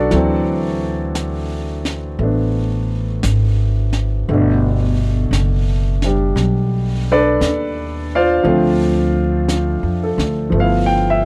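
A dry, close studio sound in a 1970s style frames this tender, late-night jazz ballad in G major, moving at a slow 58 BPM with a gentle swing. A clear, intimate grand piano with audible action noise carries the chords, from D9 through Gadd9 and Dm7 to G13, while a woody, thumpy upright bass on gut strings sits up front beside it. A softer, airy brush kit on a high-tuned snare and hi-hat enters at 0.1 seconds and rounds out this short cut from a longer piece.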